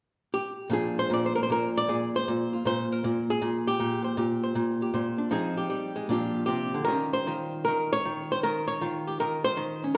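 Bathed in a wet recital-hall reverb, this relaxed, sophisticated solo jazz fragment at 156 BPM features a miked and amplified hollow-body archtop electric guitar, dark, clean, compressed and up front, entering at 0.3 s to pick its way with a rubato swing feel through Bb mixolydian harmony from Bb13 to Fm7, Bb69 and Eb13.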